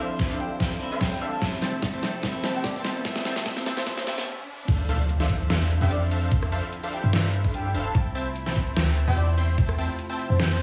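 A deep, boomy 808-style bass arrives up front at 4.7 s with sidechain pumping, anchoring the drop of this bittersweet, dreamy future bass excerpt in D minor at 147 BPM in a half-time feel, where punchy detuned supersaw stabs with lush chorus, a low-pass filter sweep and dub echo carry the riff over Dm9 and Fmaj7/C chords. A knocking electronic kick and a dubstep kit with a deep snare and metallic hats drive the build-up fill, which halts at 4.3 s before the impact, while a breathy, flute-like synth lead with vibrato floats in the background. A clean, picked electric guitar with 12-bit sampler grit and dub echo, a very quiet reedy chamber string section with gut-string tone, and a faint riser and impact fill out the moderate room sound.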